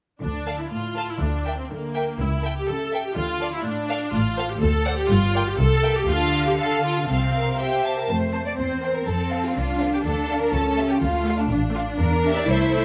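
Dramatic and urgent, this quick classical-period movement for string orchestra drives along at 123 BPM in a straight 2/4, starting in D minor before turning toward F major from 4.1 s. Viola, cello and double bass sections enter at 0.2 s, with the violins joining at 0.5 s, and all five parts carry through to the close at 12.8 s, since this is cut from a longer piece. The first violins sing the melody high up with a smooth, even vibrato that sits somewhat distant in the mix, while the second violins weave a lush, expressive line marked by portamento. Beneath them, the violas fill in the harmony from an up-front position, the cellos give a focused, close foundation, and the double basses add a clear, smooth-topped low end. A moderate concert hall reverb surrounds the ensemble, and the harmony moves through dark minor chords and dominant sevenths before settling briefly into F at 8.1 s and finally landing on a tense diminished chord.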